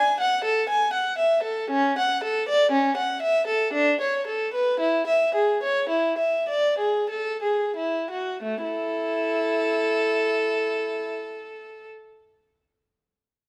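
Set in a moderate stone-room reverb, a single bowed violin sits up front with a rich, reedy gut-string tone, light vibrato and a period-style delivery. This flowing, radiant baroque-style suite movement in A major moves in a rubato 3/4 at 43-63 BPM, slowing from 0.2 to 8.4 seconds as the harmony passes from D through A/C#, Bm7/D and E. It settles on A5 as a second section begins at 8.4 seconds, and the violin plays until 11.9 seconds in this excerpt from a longer piece.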